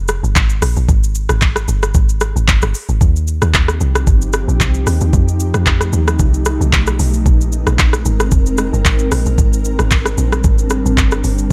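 Amapiano at 113 BPM with a relaxed, soulful 16th-note swing, cut from a longer piece, where a deep, round log drum bass with a dark, percussive FM bite and an electronic R&B kit of knocking kick, smooth hats, handclaps, rim click and shaker sit up front from the start, before an ethereal, detuned pad with ensemble chorus and built-in reverb drifts in at 3.7 seconds with slow-blooming chords moving from Eb69 through F9 and Bb9sus4 to Abmaj9#11.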